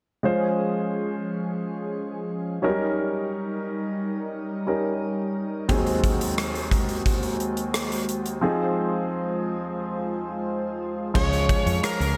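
A polished, up-front grand piano and round, detuned synth brass stabs with chorus, tape echo and shimmer reverb open this nostalgic, romantic 1980s-style pop excerpt, moving through seventh chords in a moderate plate reverb. A gated drum kit in a stone room, with a punchy kick, bright cymbals, hi-hat and rim click, enters at 5.7 seconds, and a break follows before the brass drops out. At 11.2 seconds the harmony settles on Db as a smooth overdriven lead guitar with shimmer reverb takes a brief melody over a dark, woody fretless bass.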